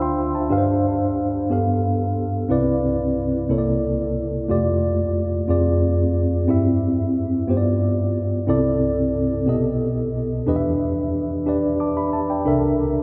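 Soulful and reverent, this 13-second gospel excerpt in C major, cut from a longer piece, moves at a slow 60 BPM in a straight 6/8 as a mellow, clean tine electric piano plays alone up front through its built-in speakers, spanning B1 to E6 with rich extended chords such as Dm9, Cmaj9, F69, Fm6 and Baug7 before settling on C13, all bathed in a wet cathedral reverb with a 4.9-second tail from a church or concert hall.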